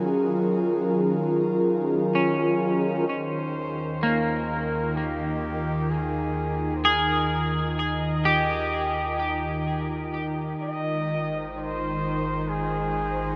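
A straight 4/4 pulse at 64 BPM carries this peaceful, luminous ambient excerpt in Eb mixolydian. It opens on a Gbmaj7 chord, with an airy, breathy pad holding soft detuned chords up front over a tense, string-like bowed drone on Eb3 that is colored by vibrato and a phaser. A bright, clean semi-hollow electric guitar picks arpeggios through analog chorus and delay from 2.2 seconds, and at 3.1 seconds, as the harmony shifts to Ebsus2, a round sub bass and a distant, roomy flugelhorn fade in, the horn singing a vibrato-laced solo melody with delay while a huge, wet reverb wraps the whole mix.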